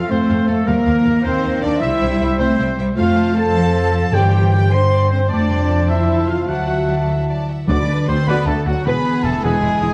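Rolling along in a straight 6/8 metre, this triumphant, adventurous cinematic cue, cut from a longer piece, sets a lush bowed violin section on the melody over a darker viola section, expressive cellos and a woody double bass section. A second, richer violin section, a hollow, airy flute, a vintage-toned oboe and a distant clarinet weave second lines, the clarinet dropping out at 7.5 seconds, while mellow French horns hold soft-edged chords, a bright trumpet section adds stabs and a fingerpicked concert harp rings out arpeggios. Close, articulate timpani hits arrive at 4.1 seconds, and a punchy tuba joins the bass at 7.7 seconds as the harmony shifts, all set in a dark, reverberant scoring-stage space.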